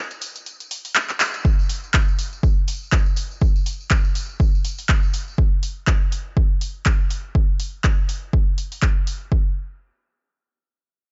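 Uplifting and euphoric, this swung house groove at 122 BPM opens with a brief break where an overdriven analog drum machine sets out handclaps and hi-hat, alongside a faint, roomy tambourine in the background, before a drum fill and band accent at 1.2 seconds. A punchy, distorted electronic kick arrives up front at 1.4 seconds, joining the drum machine in a small, dry room, while the tambourine drops out at 5.4 seconds. The gritty cassette-tape sound is dulled at the top end, giving this cut from a longer piece a raw hardware character.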